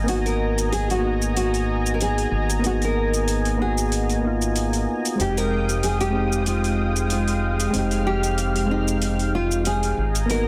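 Sunset chillout at 94 BPM in 4/4, with a light 16th-note swing and a smooth, warm mood, this short excerpt is cut from a longer piece and drifts between Abm9 and Fm9 chords. A soft, round electric-piano-like synth carries the accompaniment with a gentle warble from chorus and tape echo, while a lush, detuned unison pad holds sustained chords that stretch up into a bright upper register. Underneath, a woody, growly upright bass sits up front, played pizzicato in a low, narrow range. A fingerpicked nylon-string guitar enters at 0.1 seconds with the melody, its tape echo and audible finger squeaks adding an intimate, acoustic touch. Layered electronic hi-hat and shaker, with overdriven metallic hats, sit quietly in the background, all within a small room ambience and a dense, heavily limited modern master.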